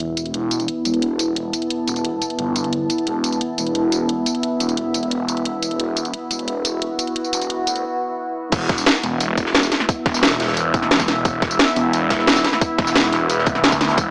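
Futuristic and aggressive, this dark technical drum and bass cut runs at 176 BPM, opening with a deep, moody ambient pad of detuned sawtooth chords, chorused and pumping against a swirling, thick phased saw bass with overdriven grit, while an overdriven drum kit with a cracking snare, bright hats, tambourine and crash pushes through the build-up. After a brief break at 7.8 seconds, the drop lands at 8.5 seconds, where a tight, up-front electronic kick and a very quiet, gritty breakbeat kit with a rolled-off top join the drive. The whole sits in a lush hall reverb with a thin, small-speaker tone.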